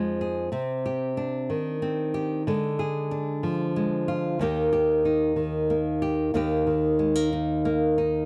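A solo nylon-string guitar, fingerpicked in a classical style, carries this melancholic, reflective folk piece in 3/4 at 93 BPM, its bright, fresh-stringed tone sitting up front and ranging from Eb2 to Ab4. The harmony moves from Fm7 through Cmadd9 and Ddim to Eb, with a new section arriving at 6.3 s before the 8.3-second cut from a longer piece ends. A touch of light reverb colours the dry, close 1970s-style studio sound.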